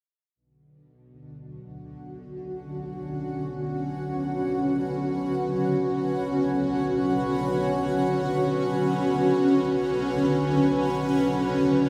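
Soaked in a huge, dreamy reverb with a long tail of 6.9 seconds, this short dark ambient drone in B minor drifts in free time and feels unsettling and desolate. A bowed-like drone sits low in the background from 1.0 s, holding between B1 and B2 with a tense, string-like sawtooth edge, a noise layer, vibrato and slow, long-sustaining swells of attack and release. At 1.5 s a granular cloud pad arrives up front, sustaining chords between D3 and B4 in a bright, blurred haze of detuned triangle and sine tones that are wave-folded and constantly evolving. The harmony rests on a single Bmadd9 chord, while a fade-in on the synth drone runs through the whole passage, which is cut from a longer piece.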